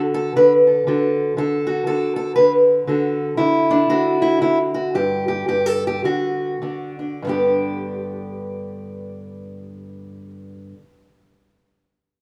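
Acoustic country blues with a gritty, rollicking mood in swung 4/4 and G major, this excerpt features a lone fingerpicked steel-string parlour guitar, dark and boxy and up front in a rough home demo mix, moving from D toward G between 98 and 119 BPM, slowing from 2.9 to 7.2 seconds, and playing until 10.8 seconds inside a lush hall reverb.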